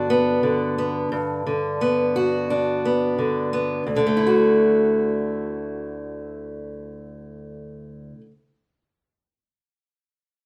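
At a steady 88 BPM in straight 4/4, this short folk fragment moves with an unhurried, even pulse in D major. A single fingerpicked acoustic archtop guitar carries the whole accompaniment from the first moment to 8.3 seconds, sitting up front in the mix. Its fresh strings give a bright ring across a range from D2 up to F#4. The harmony rests on G before shifting to Dadd9 at 3.9 seconds, marking a new section that lends the passage a hopeful, nostalgic glow. A moderate large-studio reverb opens up the room around the guitar, giving the live performance an airy sense of space.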